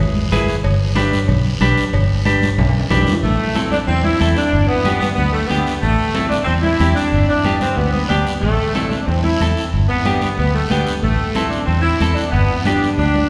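A cavernous church reverb washes over this fiery, danceable cumbia fragment, played at a brisk 185 BPM in A minor with a straight 4/4 feel. Up front, a round, foam-muted fingered electric bass anchors the low end, while congas with a thick, high-tuned skin and soft hands sit in the background beside a raspy guiro. Ringing metal-shelled cowbell and timbales drive the opening bars, and a drum fill closes that section at 3.2 seconds. At that point a warm saxophone section takes the melody up front, with jazz-style vibrato and a distant, roomy blend. A clean, picked electric guitar with a dark tone supplies the accompaniment as the harmony moves from E and G into a steady alternation of Am and G.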